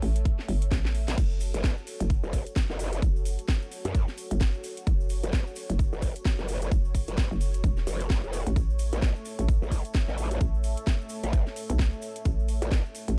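Swung sixteenths drive this gritty, swaggering bass house excerpt: a tight, tape-warm kick arrives at 0.3 seconds beneath a house kit of cracking snare, metallic hats and crash, while a hollow, knocking FM bass and a moody, detuned sawtooth pad pump under sidechain. A growling, wobbling, formant-filtered bass enters at 1.1 seconds during a short drum fill, and a grainy cabasa sits distant in a large room from 1.2 seconds, as the harmony moves from A to F#m and back inside a dark digital ambience.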